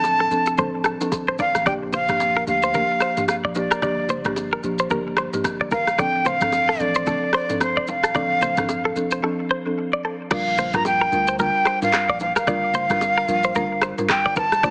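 Afrobeats at 111 BPM in G minor with a smooth, sultry swing: a breathy, up-front jazz flute with vibrato carries the melody over woody, dry folk marimba, a deep sine sub bass in the background, an electronic afro-pop kit with handclaps, rim click, shaker and toms, ringing bongos and congas, and a twangy clean electric guitar riff with phaser and tape echo entering at 0.2 s, all heard through a heavily compressed, small-speaker radio sound with light reverb and a brief break at 9.2 s.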